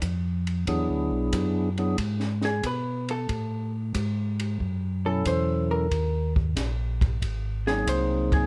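A round, dark tonewheel organ bass with a slow rotary speaker opens this soulful, bluesy soul jazz organ trio fragment alongside a compact cocktail drum kit, whose high-tuned snare, tight kick, hi-hat and ride sound smooth and up front, swinging in 4/4 at 92 BPM. At 0.7 s a second tonewheel organ takes the melody, soft and flute-like with third-harmonic percussion, key click, slow rotary and plate reverb, over changes moving from E9 through A69 and Eb5 to Ab7. A clean, compressed vintage hollow-body electric guitar enters with picked accompaniment at 2.4 s, all captured with close, detailed microphones in light reverb.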